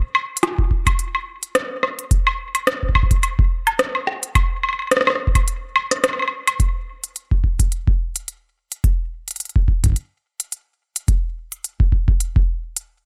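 IDM at 107 BPM in 4/4 with a 56% swing on the sixteenths, glitchy and intricate, where an up-front organic electronic drum kit of crisp hi-hats, rim clicks and woodblock, re-recorded in a large room, is joined from 0.6 seconds by a deep, overdriven analog kick from a small room, with a break at 5.5 seconds leading into a second section at 6.6 seconds, and the whole recording sounding dry and gritty.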